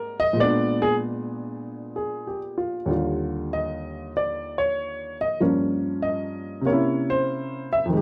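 The rhythm swings its eighth notes at a relaxed 95 BPM in 4/4, giving this short jazz fragment, cut from a longer piece, an easy, lilting gait. A lone baby grand piano carries everything from 0.0 to 8.0 seconds, ranging from Eb2 up to E5 in Eb major, with its tuning set slightly high at A4 = 443 Hz. The instrument sounds warm and intimate, sitting up front with a natural, short sustain and audible action noise that adds a tactile presence. The harmony moves from Bb7b9 into Ebmaj9 at 2.9 seconds, then on through Gm7b5 to C7b9, a colorful jazz turn that keeps the phrase reaching forward. The dry, close sound and small-room ambience evoke a 1970s-style studio session, keeping the mood swinging and warm.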